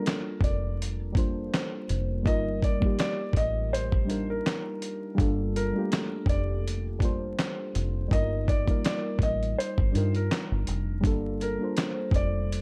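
A felt-muted upright piano carries a soft, mellow melody with audible action noise over muted synth keys, which are colored by chorus, phaser and a cassette tape character in this hazy, nostalgic lo-fi hip hop excerpt at 82 BPM in G minor with a gentle 16th-note swing. A gritty, compressed sampler-style kit with a thumpy kick, handclaps and hi-hat arrives at 0.1 seconds, and a round, punchy dub bass joins at 0.4 seconds as the harmony alternates between Gm9 and Ebmaj9/G. The mix is dry and close, wrapped in vinyl crackle.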